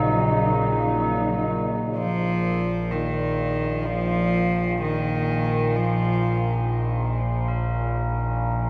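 In free time and Bb minor, this ominous, desolate dark ambient drone fragment opens with a bright, warbling overtone-sweeping drone, veiled con sordino chords from a muted symphonic cello section, mellow tubular bell arpeggios with tape echo, and a very quiet bronze singing bowl ringing with slow beating; the section and bowl drop away around 2 seconds, and a single reedy, gut-string cello carries an up-front melody with tape echo until 6.7 seconds as the bells fade in, all steeped in a heavy wash of plate reverb and echo.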